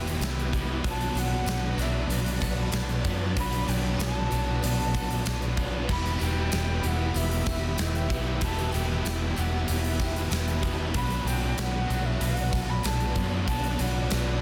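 This shoegaze and dream pop excerpt moves at 95 BPM in a straight 4/4, with a melancholic, dreamy mood in E minor that swings between Em and Bm7. An airy, expressive jazz flute carries the melody from a distance, its vibrato and tongued notes trailed by tape echo. Behind it, a swirling string machine holds slow-attack sawtooth chords through ensemble chorus and phaser, while a very quiet, scooped clean guitar picks arpeggios. Three overdriven guitars stack the riff in the background: a biting part with lush chorus, a crunchy part with reverse reverb, and a bright, double-tracked distorted part. Up front, a dark, round, foam-muted fingered bass anchors the low end, and a huge arena kit adds a punchy soft-clipped kick, a medium-tuned snare, hi-hat and bright crashes in a pumping hall, joined by a jingly, distant tambourine. The mix is dry, dense and heavily limited in a modern master.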